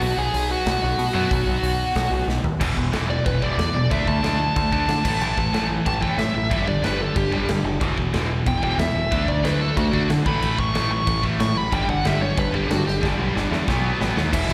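A rowdy, rebellious punk rock excerpt at 184 BPM opens in half time with a bluesy overdriven lead guitar, a biting double-tracked rhythm guitar, a growling picked bass up front and a big rock drum kit with punchy kick and bright cymbals, before a cranked stack guitar and a tight distorted guitar thicken the background riff at 1.1 seconds and a drum fill launches the lead guitar's slapback-echoed solo at 2.6 seconds, running through a mix of power chords and major chords to a final fill and a B7 at 13.7 seconds, all heard as a live gig through the venue's PA in a reverberant hall.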